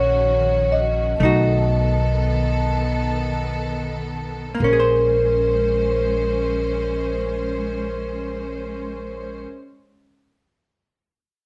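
In free time that slows over the first 4.6 seconds, this wistful, intimate jazz ballad excerpt in Bb minor sets a mellow, soft-mallet vibraphone melody with its motor off over clean, dark picked archtop guitar, a lush bowed string section with smooth vibrato, and woody pizzicato upright bass up front, all in light reverb, moving from Ebm7 through B7 to settle on Bbm9 at 4.6 seconds.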